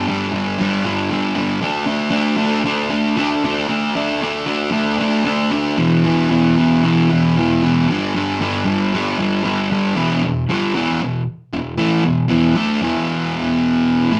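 Swaggering and rowdy, this rock excerpt struts along at 115 BPM in a straight 4/4. A lone electric fuzz guitar carries the whole piece, picked and double-tracked, ranging from E2 up to D4 with a warm, compressed distortion that sits up front. Its power-chord movement runs from G5 to D5, then E5 and back to G5, before a new section begins at 10.0 seconds on E5 and carries through to the cut at 14.2 seconds. The sound has a rough rehearsal-room character, with tube saturation adding grit and a moderate studio ambience giving the guitar a short tail.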